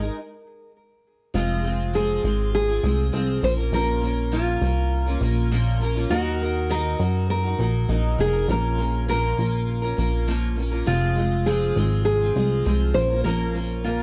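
Sunny and heartfelt, this short acoustic pop excerpt moves at 101 BPM in a straight 4/4, with a full-bodied, fingerpicked nylon-string guitar carrying the melody over a double-tracked steel-string acoustic guitar whose picked accompaniment brings audible finger squeak. A punchy, up-front analog bass with a funky filter pluck anchors chords that shift from Absus2 through Fm, Bbm and Ebm, with a brief stop between 0.1 and 1.3 seconds. At 10.9 seconds a very quiet, flute-like tonewheel organ slips in with sustained chords through a slow rotary speaker, all set in light reverb and the worn, warbly pitch drift of old cassette tape.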